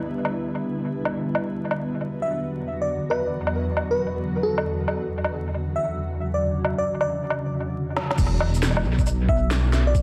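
A cloudy, granular pad pumps on Em7 and Bm/E chords to open this melancholic, rainy future garage excerpt at a swung 136 BPM in E dorian, soon joined by an organic electronic kit with a woody snare, shaker, woodblock and crash soaked in dub echo, while a sparkling, bell-like FM electric piano with chorus carries the melody from 2.2 seconds; after a drum fill at 8.0 seconds, a deep, rumbling detuned saw bass and a muffled, thumpy kick arrive at 8.2 seconds, all set in an echo-heavy mix with vinyl crackle.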